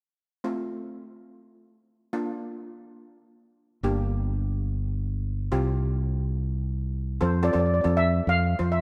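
Festive and bouncy, this calypso in F major moves at 142 BPM in 4/4 with a light swing on the sixteenths, and it is cut from a longer piece. A bright, shimmering double seconds steel pan played with hard rubber sticks opens at 0.4 seconds, carrying the accompaniment through a chord cycle of F, Bb, Gm and Csus4. A fingered electric bass joins at 3.8 seconds, its warm, direct amped tone sitting up front in the low register. At 7.2 seconds the music returns to F and a dark, smooth lead pan struck with medium rubber sticks takes the melody, placed up front above the accompaniment. The sound is a rough home demo mix with light reverb and a small room ambience.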